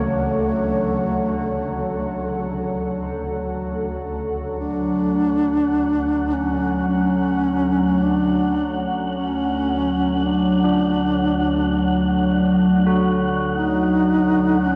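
Moving in a straight, unhurried 4/4 at 54 BPM, this excerpt of dark ambient drone sits in D major and carries an ominous, desolate mood from its opening D chord. Up front, a calm, organ-like drone anchors the low register from D2 to F#3, its detuned unison tone thickened by ensemble chorus and its own reverb. A dark duduk, close-miked and played solo in a folk style with vibrato, carries the melody between A3 and Eb4 through tape echo. Above them, a full-bodied, evolving pad holds sustained chords with chorus, while carillon bells with a bronze, iron-clapper ring trace arpeggios in the background through tape echo. At 5.0 seconds a breathy, wind-like tuned noise texture enters on F#5 and lingers to the end at 14.8 seconds. The whole mix floats in a huge, wet reverb with a 9.3-second tail and a dark, warm production.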